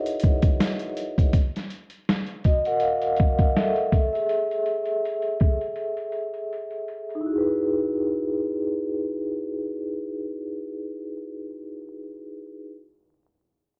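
A soft-mallet vibraphone opens this mellow, dreamy lo-fi hip hop passage at 81 BPM with a light 16th-note swing, its ringing, airy tone carrying a medium motor vibrato and a cassette-tape patina as it leads through Emaj9, F#maj7 and Eadd11/G#, tuned slightly flat of standard pitch. A gritty, pitched-down boom bap sampler kit sits up front with a thumpy kick, medium-tuned snare and hi-hat, overdriven and compressed with the sound of a large room, while a filter sweep, vinyl crackle and moderate reverb haze the mix and a break arrives at 5.8 s. The drums drop out at 7.2 s, leaving the vibraphone alone back on Emaj9 until this cut from a longer piece ends at 12.7 s.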